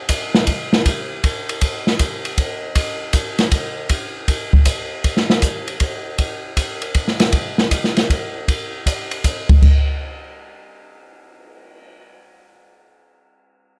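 An up-front, airy open jazz drum kit plays alone from 0.1 to 11.8 seconds in this playful, relaxed jazz excerpt at 157 BPM in a swung 3/4, with dark cymbals (ride, hi-hat, crash and a cymbal swell), a medium-tuned snare and a boomy kick, all in a polished studio room with light reverb and a dark production.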